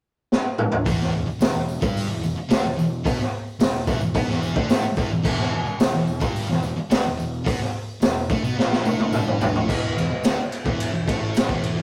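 Garage rock with a gritty, raw mood, this excerpt opens on a drum fill from the up-front kit, whose high-tuned snare and punchy kick sound saturated and small-roomed with a rolled-off top, before a thick, bright, double-tracked fuzz guitar riff and a fuzzed, overdriven picked bass in the background settle on E minor at 0.9 s. A very quiet, jingly tambourine sits beneath, and another drum fill at 8.6 s leads into a new section at 9.7 s where the chord drops away. The whole thing has the rough, lightly reverberant sound of a rehearsal room.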